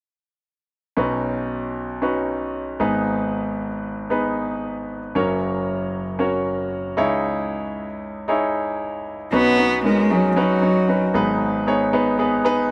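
Over a straight 4/4 pulse at 115 BPM, this uplifting, warm pop fragment in B major opens at 1.0 seconds with a polished, up-front concert grand piano laying down short-sustained chords with a deep bass through Badd9, G#m, F# and C#madd9, before a single close, focused bowed cello sings a brief vibrato melody from 9.3 to 11.1 seconds, colored by tape echo, all set in a spring-reverb room within an echo-heavy mix.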